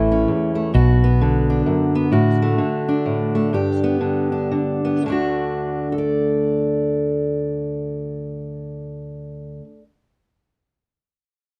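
A light reverb surrounds this short, hopeful and peaceful acoustic folk piece in 3/4, cut from a longer piece, with a gently swung lilt. An up-front fingerpicked steel-string acoustic guitar carries the accompaniment throughout, its finger squeaks audible as it moves through A, B minor, D over A and G before settling on D. A round, punchy fretless electric bass with a woody, hollow-body tone sounds only for the opening 1.6 seconds, and the tempo slows between 2.1 and 5.0 seconds, leading into a second section.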